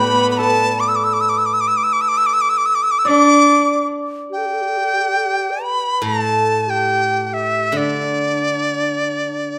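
A bright dizi leads this short cut from a longer Chinese traditional chamber piece, its pure bamboo tone carrying a buzzing membrane, crisp attacks, vibrato and lifted highs placed up front. The mood is pastoral and festive, and the music moves freely in rubato within a metre of four. Beneath it, a low xiao plays a second line in a mellow, airy, end-blown voice with soft attacks, rolled-off highs and expressive vibrato, while a hammered dulcimer adds shimmering, ringing notes until 5.5 seconds. A single cello, bowed close in period style with a rich, reedy gut-string tone, joins the supporting lines only for the opening 3.8 seconds. Underneath, a steel-string zither played with fingerpicks gives silvery low accompaniment throughout, the ensemble sits in a moderate recital hall reverb, and a second section begins at 4.3 seconds.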